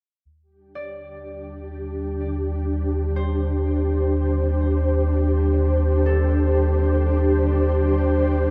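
A round, deep analog bass note on Eb opens this ambient passage at 0.3 s, sitting up front in free time. A concert harp enters at 0.8 s with fingerpicked arpeggios, fading in from the background, its ringing acoustic tone trailed by tape echo. At 1.3 s an ethereal, airy pad arrives with sustained chords and a slow attack, shimmering with ensemble chorus and tremolo while a filter sweep shapes its sound. The harmony rests on a single Ebmaj7 in Eb lydian, giving the music a weightless, peaceful mood. A huge ambient reverb and a dark, warm production envelop the parts, and the passage is cut from a longer piece.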